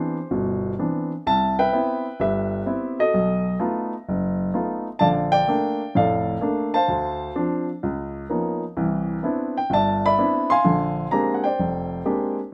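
Playful and swinging, this short solo jazz excerpt features a single baby grand piano carrying the whole performance in a lilting 4/4. The piano sounds present, polished and up front, with a rounded body that spans from deep bass notes up into the bright upper register. Its harmony moves through rich, colourful chords such as Cmaj9, B7#11, Bbmaj7 and Db13, giving the phrases a sophisticated, slightly wry flavour. A brief opening gives way at 1.2 seconds to a longer passage that circles back to Cmaj9 before settling on Bb13. Moderate studio reverb adds a gentle sense of room around the instrument, and the piece runs about 12.4 seconds as a fragment of a longer work.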